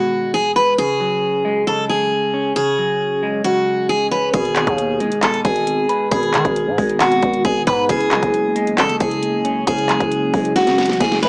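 A bright, full-bodied picked steel-string acoustic guitar carries the melody up front in this melancholic, hard-hitting trap cut from a longer hip hop piece, set at 135 BPM with a half-time feel over G#m and F#sus2 chords. Beneath it, a clean semi-hollow electric guitar with a scooped, hollow-body tone and a phaser plays accompaniment from the start. At 4.3 seconds a growling, buzzy 808-style bass and a trap drum kit arrive, the kit pushing up front with a hard-clipped kick, sharp snare, handclaps and metallic hats. A deep, moody pad built from detuned sawtooth unison with a sub octave, chorus and a moving notch drifts in very quietly at 6.0 seconds, adding dark sustained chords. The mix has a dry, gritty character like a small speaker, and a drum fill closes out the final moments at 10.6 seconds.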